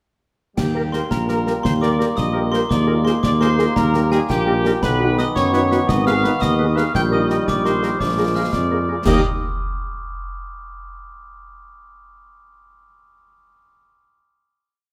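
A moderate large-studio reverb surrounds this rousing, proud military-style march for wind band in 6/8, where a clear, tight trumpet section carries the melody with light vibrato, a bright, sparkling glockenspiel on hard plastic mallets doubles the tune at the octave, warm trombones hold sustained chords, mellow French horns and smooth-topped woodwinds add after-beat and sustained chords in the background, an up-front tuba plays the bass on the beats, and a close, dry marching snare with dark clash cymbals and a concert bass drum on the beat drives the band until it settles on a final chord at 9.1 seconds.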